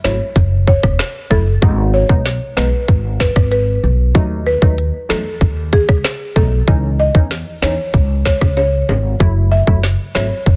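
A dense, heavily limited studio sound frames this sultry, tough dancehall excerpt in C# minor at 95 BPM, where a dark, buzzing marimba carries the melody through tape echo over crisp, detuned wavetable chord stabs pumping with sidechain, a thumpy pizzicato upright bass, and an up-front electronic kit with a tight kick, woody soft-clipped snare, smooth hats, finger snaps and rim clicks, while low-tuned bongos join in the background at 7.6 seconds.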